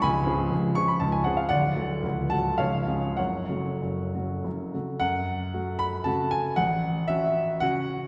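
A solo grand piano opens on a C#7 chord, setting a wistful, nostalgic tone for this brief romantic triple-time dance in F# minor. The piece moves in 3/4 at a flexible pace between 90 and 130 BPM, its dotted rhythms bending under a loose rubato. The piano sits up front with a clear, intimate and natural tone, close enough that the soft clatter of its action can be heard beneath the notes. The harmony passes through D and C# before settling onto F# minor, and the playing spans a broad range from deep bass to the upper treble. Around 5.0 seconds the music turns to a new phrase, resting on F#m/A near the end of this 8.1-second fragment of a longer work. A lingering concert-hall reverb, about 2.0 seconds long, lends the sound a spacious, church-like bloom.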